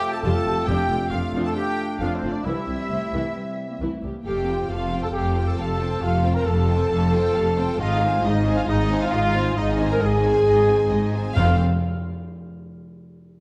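A clear French horn section carries sustained chords through this soaring, heroic cinematic cue at 135 BPM in 4/4, set in F mixolydian and cut from a longer piece. Beneath them, a rich double bass section and a cello section anchor the low end, while a dark, close viola section with portamento fills the middle. Two lush violin sections sit on top: one, soft in attack and smooth, carries the melody from the background, and the other, focused and distant, adds a second line. A trumpet section plays stabs throughout. The opening is fuller: an airy, bright flute ensemble, a mellow solo clarinet and a tight trombone section add colour but fall away within the first 4.3 seconds. Up-front, dry timpani strikes land at 0.7 and 11.4 seconds. The chords move from Fadd9 through Dm/F and C, return to Fadd9 and then shift onto Ab before settling on F, all bathed in a scoring-stage reverb.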